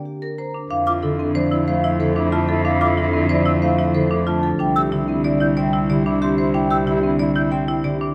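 In a brisk, straight 6/4 at 185 BPM, this bright, hypnotic minimalist classical excerpt in F major sets thumb-plucked concert harp accompaniment and percussive marimba arpeggios against a ringing soft-mallet vibraphone melody with motor vibrato, joined at 0.7 seconds by a distant, roomy French horn holding E4 and a focused bowed cello bass, while a hollow, airy flute weaves arpeggios in the background from 0.9 seconds, all moving from Gm through Fmaj7 to C under light reverb and close, detailed microphones.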